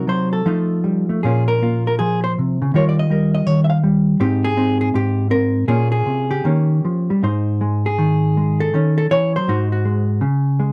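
A dark, clean hollow-body electric jazz guitar sits up front and carries this short solo jazz fragment entirely on its own, fingered and compressed across a range from Ab2 to F5. The mood is relaxed and playful, set in Ab major at 161 BPM in 4/4, with a swung eighth-note feel and a rubato looseness. The harmony moves from F7 through Bbmadd9, Ebadd9 and Abmaj9 before a Bbm7 to Eb7 turn closes the opening passage at 7.2 seconds. A second passage then settles on Ab and travels through Ebm7b5 and Ab7 to a bare Db5 near the end of the 10.7-second clip. The sound is a dry, close 1970s-style studio recording with a touch of light reverb, and the piece is cut from a longer performance.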